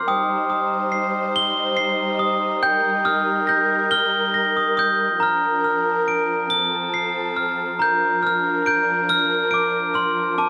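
A slow, rubato 6/8 sway at 47 dotted-quarter beats per minute carries this sleepy, tender children's lullaby in Bb major, a short cut from a longer piece. A glockenspiel struck with rubber mallets sings the melody up front, its bell-like ring mellow and close, while a muted string section beneath it holds veiled, dark chords with vibrato. The harmony moves from Cm through Eb and Bb/F to F before settling on Bb at 7.8 seconds, all set in a moderate recital hall reverb.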